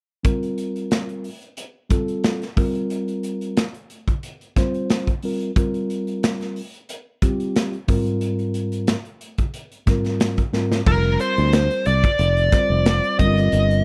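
A mellow tine electric piano and a punchy, up-front studio drum kit with a pumping room sound open this funky, slick jazz fusion excerpt at 90 BPM with a light 16th-note swing, moving through suspended and added-note chords until a drum fill at 10.5 s brings in a bright, overdriven picked lead guitar melody and a warm fretless bass at 10.9 s, all in a dry, close mix.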